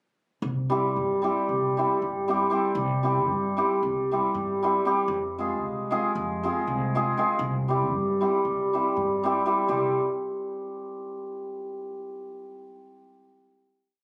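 Upright bass opens at 0.4 seconds with woody, thumpy pizzicato on gut strings, holding root and fifth on the main beats beneath an up-front, shimmering hammered dulcimer that enters at 0.7 seconds with ringing off-beat triad chords, driving this fiery, virtuosic Balkan wedding-band piece at 234 BPM in 9/8 through C, F minor and back to C before a final chord at 9.7 seconds, all heard through a phone in the room with club reverb and compression.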